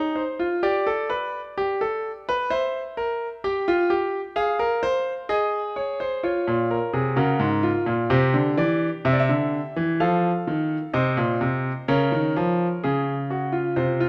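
Set in a straight 4/4 pulse, this serious, driving excerpt from a longer baroque-style three-part fugue features a solo bright concert grand piano, brilliant and up front with deep bass reaching from Ab2 to G5, moving through minor harmonies such as Fm/Ab and Bbm in a moderate recital hall reverb captured by close, detailed microphones with a faint mains hum.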